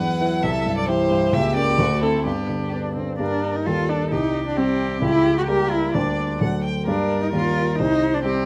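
A present grand piano with long sustain leads the accompaniment up front in this cheerful, spirited passage cut from a quick classical-period piano quartet movement in 2/4, while an expressive cello with portamento sings a close second line, a distant, vibrato-rich violin carries the melody, and a focused second violin adds an inner line until 3.0 s, just before the music turns darker at 3.2 s, all in a detailed, lightly reverberant room.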